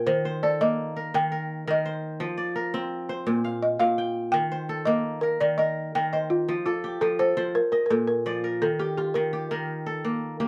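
Set in a dark production with a modest small-room reverb, this flowing, hypnotic excerpt of West African string and xylophone music moves in a straight 12/8. A woody, round balafon, struck with soft rubber mallets and sitting mid-forward, carries the melody and takes a solo through the first 6.5 seconds, while an up-front acoustic kora supplies bright, ringing, crisp fingerpicked arpeggios. The balafon drops out at 9.8 seconds, leaving the kora alone until the cut at 10.5 seconds.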